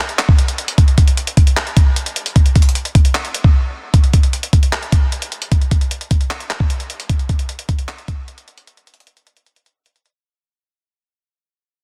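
The beat moves in 4/4 at 152 BPM with a half-time feel, giving this hip hop fragment a heavy, unhurried stride. A dusty soul drum kit carries the whole piece from 0.1 seconds, built from handclaps, hi-hat and a thumpy kick drum, and the kit sits up front in the mix. The kit has a gritty, compressed, sampler-style character at its natural pitch, lending the groove a hard-hitting yet melancholic edge. The sound is dry and close, finished with a dense, heavily limited modern master. A brief break arrives at 3.5 seconds, after which the pattern returns and begins a gradual fade-out from 3.9 seconds, thinning into a final break before the clip ends.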